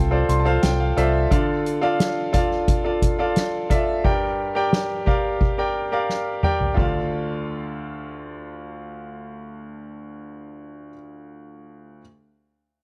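In a straight 4/4 feel, this earnest, dramatic piano-driven pop fragment, cut from a longer piece, opens with a brilliant grand piano fill over a round, foam-muted vintage electric bass that drops out at 1.3 seconds, while a soft-mallet drum kit with a boomy kick and medium-tuned snare plays until a fill ending at 6.8 seconds, stopping at 6.9 seconds and leaving the open, up-front piano alone in a dry, close 1970s-style small-room sound.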